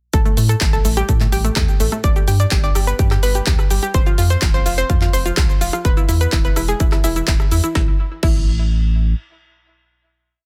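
A dry, dense and heavily limited mix opens this short, expansive and driving progressive house piece at 126 BPM in A minor. A punchy four-on-the-floor electronic kick sits up front, a deep house kit adds a woody snare, dark hats, claps, rim clicks, shaker and crash, and a thick, saturated sub bass drives eighth notes with sidechain pumping under an A5, G5, F5, E progression. A round, bright analog pluck with chorus, delay and pumping repeats a sixteenth-note arpeggio riff over a pedal note; it rings on through the final A5 chord, with the drums stopping at 8.4 seconds and the bass at 9.1 seconds, and the pluck closing at 10.5 seconds.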